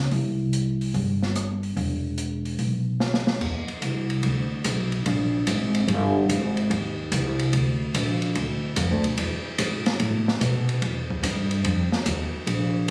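An upright bass opens this joyful, energetic big band swing excerpt at 146 BPM, its woody, plucked steel-string tone sitting up front, with an open jazz drum kit joining at 0.1 seconds. The drums, boomy in the kick and dark in the cymbals, cover crash, hi-hat, ride, rim click and a medium-tuned snare, and a fill at 3.0 seconds leads into a new section at 3.4 seconds. Captured on a phone in the room, the sound carries a light club reverb and compression, giving it a lively, close feel.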